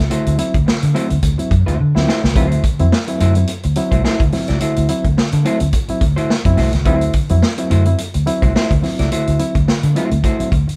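A lightly swung 16th-note groove at 107 BPM in 4/4 drives this strutting, energetic funk excerpt in D mixolydian, tuned to A4 = 438 Hz, where a punchy, up-front vintage drum kit with a medium-tuned snare and rolled-off top plays a fill from 1.8 to 2.4 seconds, a dark, round, foam-muted fingered electric bass sits underneath, a clean hollow-body jazz guitar supplies shadowy accompaniment, and a reedy, worn, slightly out-of-tune electric piano adds fast-tremolo stabs through its built-in speakers over a D9 chord, with the band captured playing live in one room with light reverb.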